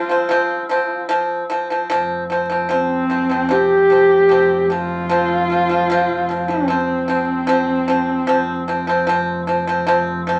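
A husky, woody horsehead fiddle sings a proud melody with vibrato and portamento over dry, percussive fingerpicked pipa arpeggios on an F5 chord in this galloping Mongolian traditional excerpt at 75 BPM in 4/4, joined at 1.9 seconds by a rich, biting bowed double bass drone with an airy tone, all in a club reverb with vinyl crackle, until the fiddle drops out at 9.1 seconds and the pipa and bass carry on to the cut at 10.4 seconds.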